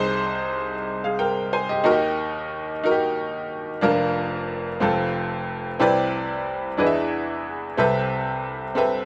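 In a slow 6/8 at 61 beats per minute, counted in dotted quarters with a straight feel, this short gospel passage unfolds on a single upright piano. The mood is soulful and jubilant. The piano sounds brilliant and woody, with a worn, slightly detuned character, and it sits up front and present as it ranges from deep F1 bass notes up to Ab5. The opening phrase moves through Ab/C, Eb, Bb/F and F, and at 5.8 s the music settles into C major with a richer turn through Cmaj9, E7 and Am9/C. A moderate studio reverb and the feel of live playing in one room give the instrument a natural space. The recording is cut from a longer piece and ends at 9.1 s.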